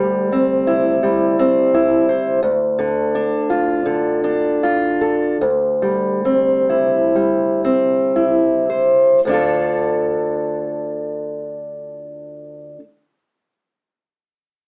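This folk excerpt features a single fingerpicked steel-string acoustic guitar, reflective and wistful in mood and in a straight 4/4. The guitar sits up front with a dark tone, audible finger squeaks, and a slapback echo trailing its lines as it ranges from D2 up to C5. The harmony moves from C/D to Dm and back to C/D, and the playing slows from 2.4 to 9.3 seconds before the music settles onto Dm as a new section opens. The guitar falls silent at 12.8 seconds, shortly before the passage ends. A modest small-room reverb surrounds it, while the overall sound carries the warble and pitch drift of worn old cassette tape, heard through what feels like a small speaker.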